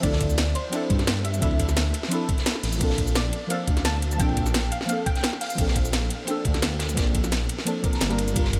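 A dark, rumbling detuned saw bass sits up front in this melancholic, rolling liquid drum and bass excerpt, under a gritty, thumpy electronic kick, a layered drum kit with a cracking snare, metallic hats and cabasa, and a saturated acoustic breakbeat kit with dark cymbals and a rolled-off top, while deep mellow chord stabs with chorus, phaser and analog delay move from Dm9 to Bbmaj9 and a soft, round pluck melody with ensemble chorus floats above until 5.9 seconds, all set in light digital ambience.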